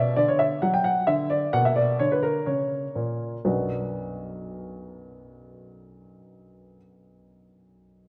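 A baby grand piano sits up front in a wet recital hall, its open, warm tone and short sustain carried by a long reverberant tail. This brief fragment of a classical-period sonatina in B minor is restless and serious, moving in 4/4 at roughly 117-134 BPM with a straight feel, and it slows down across its first 3.5 seconds as the harmony moves from B minor to A-sharp diminished. At 3.5 seconds a new section returns to B minor, and the solo piano ranges from B1 to G5 before stopping at 8.1 seconds.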